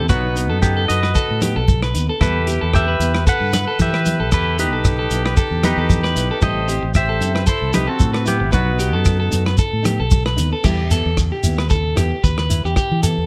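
A small, roomy sound frames this bittersweet, danceable highlife excerpt at 114 BPM with a lightly swung 16th feel in E harmonic minor, moving through B, Em and Am7. A twangy, clean fingered electric guitar carries the melody while a breathy, jazz-style trumpet with light vibrato plays a second line, both stopping at 9.6 s. Underneath, a bright, slightly broken-up guitar picks arpeggios through slapback echo, a round, up-front fingered bass anchors the low end, and a fingerpicked classical nylon-string guitar sits in the background. A dark, smooth vintage kit with a tight kick, hi-hat, rim clicks and crash plays alongside a grainy, close shekere and soft-handed, thin-skinned congas that drop out at 10.5 s.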